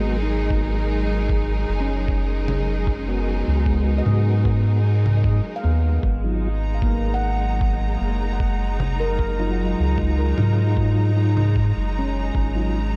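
This ambient dub fragment opens at once on a lush, bowed string section holding sustained chords over a G#m7 harmony, joined by ringing handpan arpeggios touched with tape echo, mellow flute-like tonewheel organ stabs swirling through chorus vibrato, a slow rotary speaker and dub echo, and a deep, round sub bass sitting up front. At 76 BPM in a straight 4/4 and G# dorian, the mood is meditative and spacious. A compressed, pitched-down kick drum arrives at 0.5 seconds with a muffled, thumpy weight, as if re-recorded in a large room. Very quiet congas, similarly sampler-style and muffled, slip in at 2.5 seconds and drop out at 11.5 seconds. The strings carry a focused, smooth top with vibrato, while the handpan's stainless-steel tone sits in a boxy small room. It is all wrapped in dark digital ambience, a short cut from a longer piece.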